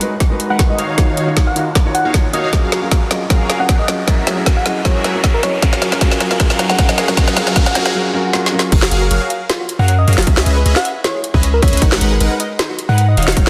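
Future bass in a bright, lush half-time swing, where a felt-muted upright piano with audible action noise, a soft struck FM synth lead, a fat detuned sawtooth polysynth riff, a deep sine 808-style bass, a hard-clipped electronic kick, a trap kit with woody snare and metallic hats, and a background riser and swell build through drum fills and a filter sweep on the lead until the drop at 8.7 s, where the piano stops and a gentle pluck adds arpeggios in a hall-reverb ambience under a dense, heavily limited master.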